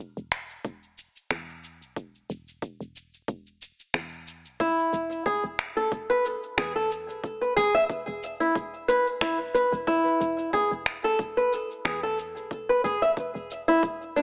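Heard through an AM-radio filter and a moderate echo-chamber reverb, this earthy, lightly swung organic downtempo excerpt at 91 BPM in E major rests on a woody, round, dark FM bass with sidechain pumping, layered electronic shaker and finger snaps, and a punchy electronic kick. An up-front, fingerpicked flamenco guitar joins them at 4.6 s with arpeggios through a digital delay, and the E5 harmony falls away at 9.9 s.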